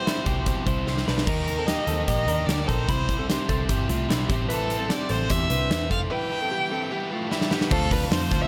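This jangly indie pop excerpt, cut from a longer piece, moves in a straight 4/4 with a restless, bittersweet mood. A smooth, focused violin carries the melody with vibrato, set over a biting overdriven guitar and a bright, twangy clean electric guitar whose compressed arpeggios are coloured by digital delay. A big, airy rock drum kit sits up front, with a punchy kick and bright cymbals, and it marks the turns with fills at 0.9 and 7.3 seconds. A dark, round, foam-muted picked bass enters at 0.3 seconds, and the harmony moves from C through Eb, Am7 and Em. A hollow, flute-like pad slips in very quietly with sustained chords at 7.7 seconds as the harmony lands on Dm7, all within a light reverb.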